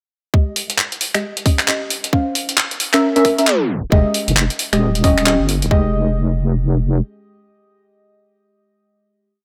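UK garage two-step piece with a skippy, late-night mood, where mellow, chorus-soaked chord stabs sweep through a filtered build beside an overdriven two-step kick and gritty, pitched-up sampler snaps, claps and swung hats, a tape stop at 3.5 seconds ushers in a deep wobbling bass, and the stabs ring out on a final Fm9 chord, joined by the bass until 7 seconds, and carry on until 9.4 seconds.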